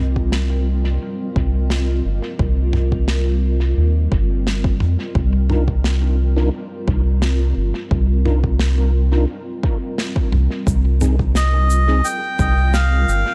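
A dry, close recording with little room sound carries this hazy, spacious ambient dub fragment, cut from a longer piece. A granular cloud pad holds blurred, slowly evolving chords underneath, while a round analog bass sits up front with a dark, sustained tone. An overdriven electronic kick drum lands deep and forward, and a damped 70s drum kit adds shaker, fat snare and toms, sent through dub echo. From 5.5 seconds a mellow, flute-like tonewheel organ plays soft stabs with chorus vibrato, key click and dub echo. Near the end, at 11.4 seconds, a reedy, breathy melodica steps up front with a short melody as the harmony moves from a lush minor chord to a rootless major one.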